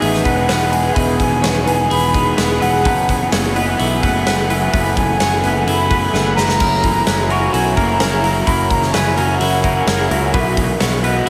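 Soaked in a vast, dreamy reverb, this blissful and wistful shoegaze and dream pop rock excerpt sets an airy, vibrato-laden silver flute melody over a dark, detuned ambient pad, a scooped, twangy guitar playing chorused arpeggios, a bright overdriven guitar riff with reverse reverb alongside a raw, chorused garage guitar riff, a growly picked bass, and a punchy, up-front arena drum kit that plays a fill at 6.1 seconds.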